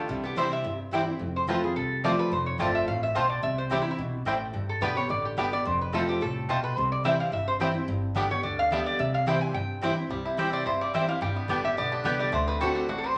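A straight, brisk 4/4 pulse at 216 BPM drives this joyful, virtuosic bluegrass excerpt in C major, cut from a longer piece. Up front, a lap resonator guitar carries the melody with a nasal, metallic slide tone played with fingerpicks. A second resonator line sits in the background only for the opening moment, ending at 0.8 s. A bright, full-bodied jumbo steel-string acoustic guitar picks the accompaniment prominently beside a woody, thumpy pizzicato upright bass. From 0.4 s a twangy, percussive bluegrass banjo adds its own melody line, and round, mellow double-string mandolin stabs join in. The chords move mostly among C, F and G before a D7 near the close, and from 10.1 s the resonator guitar takes a solo played with a steel bar, all set in a wet, large studio reverb.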